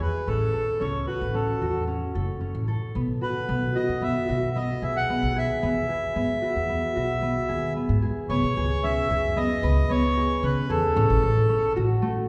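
A wet concert-hall reverb surrounds this short cut from a longer piece, which is heard from further back in the room even as each instrument sits up front. It is contemporary instrumental chamber music in 5/4 at 112 BPM with a straight feel, and its mood is hopeful and playful. A reedy, airy accordion carries the melody until 11.7 seconds, while a concert harp plays bright, ringing arpeggios, thumb-plucked, through to 12.3 seconds. Beneath them, a pizzicato upright bass with steel strings supplies a woody, growly bass line. The harmony moves from A6 through Bsus4 and Eadd9, shifts to C#m7 at 8.3 seconds as a new passage begins, and returns to A6 near the close.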